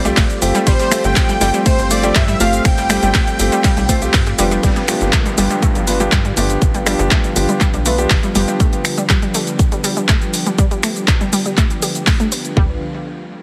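Hopeful and expansive, this straight 121 BPM progressive house excerpt in G mixolydian opens on a drop where a thick, detuned unison lead with delay carries the melody over a faint, smooth supersaw for the first 4.1 seconds, while a lush chorused pad, delayed piano stabs with deep bass, a tight saturated sequencer bass and a bright detuned analog pluck arpeggio all pump under sidechain against a big-room kit of cabasa, finger snaps, handclaps, hi-hat and ride plus an up-front house kit with a punchy kick and toms, before the chords move from Fadd9/G to G7 at 4.6 seconds as a filter sweep moves across the tape-tinged pluck and a very quiet downlifter falls, all in a heavily compressed, radio-like sound with light reverb.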